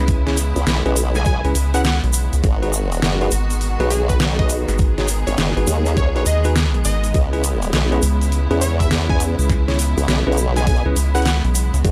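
A rubbery, hollow square bass bounces up front alongside a formant-sweep wobble bass with chorus, entering at 0.6 seconds, in this swaggering, funky glitch hop excerpt at 102 BPM in C# minor with a swung 16th feel. An overdriven knocking kick and a pop kit's deep snare and hi-hat drive the groove, with a grainy tube shaker in the background, lush sidechain-pumped strings, bell-like electric piano stabs with digital delay, and a punchy, catchy unison lead with delay from 1.2 seconds, all over C#m7 and G#m7 chords in light reverb.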